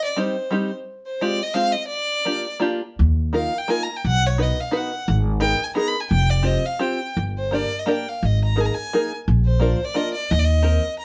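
A small band plays live together in one studio room, with a moderate reverb giving the sound a touch of space and every part sitting up front. This whirling, charming musette waltz moves in three with a gentle swing and a rubato give to its phrasing, and it is a short cut from a longer piece. A single bowed violin carries the melody with a rich, smooth, even tone and vibrato. An open-back banjo, fingerpicked, plays the accompaniment from 0.2 seconds with a mellow yet twangy, plunky, percussive bite. A pizzicato upright bass on steel strings joins at 3.0 seconds, adding a woody low end that stands a little louder than the others. The harmony wanders through colourful minor and suspended chords before settling on Eb6 at 10.3 seconds.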